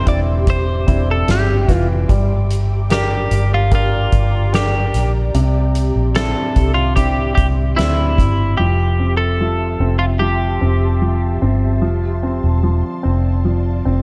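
A heartfelt pop ballad at 74 BPM in a straight 4/4, this emotional excerpt pairs a bright, twangy twelve-string electric guitar melody coated in tape echo with polished baby grand piano accompaniment and an ethereal, detuned pad shimmering through ensemble chorus and phaser. Underneath, a round, foam-muted fingered bass sits up front, while a soft-mallet drum kit with a fat snare and boomy kick plays until 8.4 seconds. The guitar drops out at 11.4 seconds, leaving piano, pad and bass to carry the shift through Am7/F and Dm7, all framed by a dark production and small room ambience.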